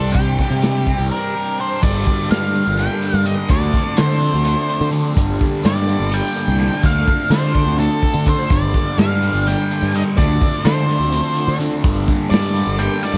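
Dark and hypnotic, this short cut of psychedelic rock in 7/8 at 252 BPM in G minor sets an octave-fuzz lead guitar's murky melody over a bright, double-tracked fuzz guitar riff drenched in phaser and tape echo, a gritty overdriven picked bass up front, a saturated breakbeat drum kit with a tight kick and rolled-off top, and a swirling, very quiet phased string machine holding Csus2, Gmadd9 and Dm7 chords, while a jingly tambourine slips in behind at 1.8 seconds after a brief break from 1.1 seconds, all in an echo-heavy small-room mix.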